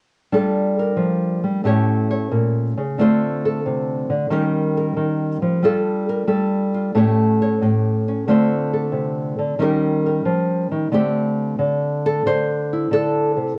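A worn, warbling cassette sound with drifting pitch and a dulled top end wraps this short cut from a longer piece in a moderate studio reverb. A lone nylon-string guitar, small, fingerpicked and up front, plays solo jazz in D minor at 91 BPM with a swung 4/4 feel, cycling through Gm9, A7, Dm7 and Eb7 twice before settling onto Dsus2 at 10.9 seconds. The mood is smoky and cool.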